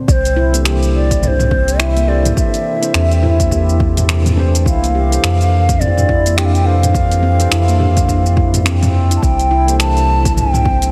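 A very quiet, ethereal pad of detuned sustained chords opens this peaceful, earthy organic downtempo excerpt, joined almost at once by a breathy, end-blown ney melody with delay, ringing stainless-steel handpan arpeggios, also delayed, a round sine sub bass up front, and a swung, overdriven deep house kit of finger snaps, hi-hat, shaker, toms and a deep layered kick, before a clean tine electric piano enters at 0.5 s in the background with sidechain pumping and delay, all under light reverb and a heavily compressed, radio-like sound.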